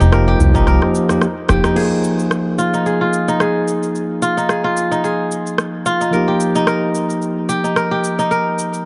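A lightly swung 4/4 groove at 110 BPM drives this mystical, organic downtempo piece in F minor, built on a deep house kit of cabasa, crash cymbal and rim click, with a hard-handed djembe and a punchy electronic kick sitting in the background through the opening bars, where a drum fill runs through a band accent at 1.6 seconds. Up front, a crisp, ringing, fingerpicked kora spins arpeggios through a low-pass filter and delay beside a barky, lightly overdriven tine electric piano whose pumping, delayed chords take a filter sweep from 1.8 seconds, while a smooth sawtooth-and-square synth bass with ring modulation pumps beneath them until 1.6 seconds. The mix is dark and softly reverberant, its harmony moving from Eb6 to Fm7 and later Eb/F.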